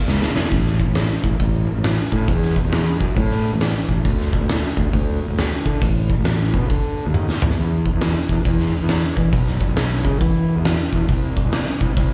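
Driving and raunchy, this swung blues rock and southern rock power-trio excerpt at 136 BPM pairs a growly, overdriven fuzz bass, fingered and up front, with an oversized low-tuned drum kit whose boomy kick, fat snare, toms and hi-hat sound saturated in a pumping stone room, with drum fills at 0.1 and 7.1 seconds, all heard as a live club gig through the venue's PA.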